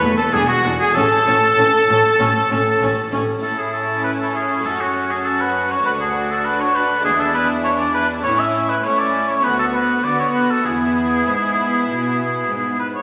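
This festive, lively passage from a baroque-style concerto movement in A major opens with lush bowed strings and harpsichord, moving at a straight 99 BPM in 4/4. Violins carry a second line with smooth vibrato, and violas sit close and rich beneath them. Cellos and double basses hold the bass, with the double basses playing in the background only until 3.2 seconds. A full Flemish-style harpsichord with two sets of strings plucks its accompaniment in the background behind the ensemble. At 0.2 seconds a clear oboe takes the melody, up front yet distant and roomy with light vibrato, alongside a very quiet, high symphonic violin section. The harmony moves through A, F#m, D6 and E7 before ending on E, all in a wet recital-hall reverb with a layer of vinyl crackle, in this section cut from a longer piece.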